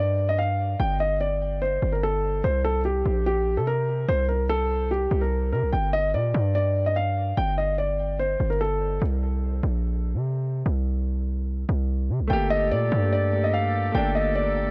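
A worn, warbling cassette-tape sound with a small room ambience colors this dark, tense hip hop excerpt, set at 146 BPM in a half-time 4/4 feel in G minor. A dark, mellow grand piano with audible action noise carries the delayed melody up front, while a distorted, saturated 808-style bass with a fast attack runs heavy and aggressive beneath it throughout. The piano melody drops out at 9.0 seconds and returns at 12.3 seconds, joined by a second piano's accompaniment and a distant woodwind section with light vibrato sustaining chords over a Gmadd9.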